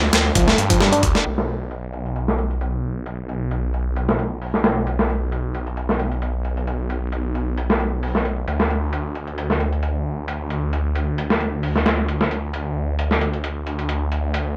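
A gritty, sampler-style breakbeat drum kit sits up front, its thumpy kick, medium-tuned snare and hi-hat overdriven, compressed and filtered, with the sound of a small room folded into the kit. This raw breakbeat cut, taken from a longer piece, moves at 133 BPM in 4/4 with a light swing on the sixteenths. Alongside the drums, a thick, swirling detuned saw bass runs throughout between B1 and G2, saturated and sustained with a fast attack and a phaser coloring its tone. Over a Dm7 chord at the opening, a bright, reedy electric piano plays a brief riff from 0.4 to 1.0 seconds, clean and direct but shaded by fast tremolo, tube saturation and delay. From 1.3 seconds the harmony drops away, leaving the bass and drums to carry the rest of the section in a dry, close-sounding mix.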